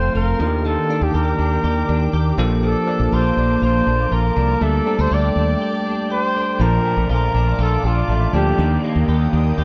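A distant, roomy flugelhorn carries the solo melody with scooped notes, touched by a digital delay, in this moody, dramatic pop excerpt at 121 BPM in a straight 4/4. Beneath it, a bell-like tine electric piano plays bright, clean accompaniment, while a glassy FM pad with a slow attack and long release holds ethereal chords through ensemble chorus and its own reverb. A clean, compressed electric guitar recorded direct picks out a chorused riff, and a round, dark fretless bass sits up front. The harmony moves through Ebmaj7, Bbmaj7 and Dsus4, with a break at 5.6 seconds before a very quiet, overdriven, lo-fi garage guitar joins at 6.6 seconds as the music returns to Bbmaj7. The flugelhorn drops out at 8.8 seconds, leaving the band in a lush hall reverb and a dark, warm production.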